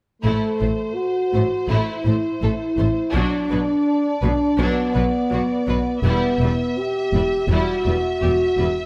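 Cinematic and dramatic, this epic excerpt cut from a longer piece moves through Am, Bm and Em as a dark, roomy French horn section holds sustained chords up front, two violin sections carry a smooth, lightly vibrato melody and a lush, expressive second line, a portamento-tinged viola section and close cello section sit in the background, and a distant double bass section anchors the low end, all under light reverb with close, detailed microphones.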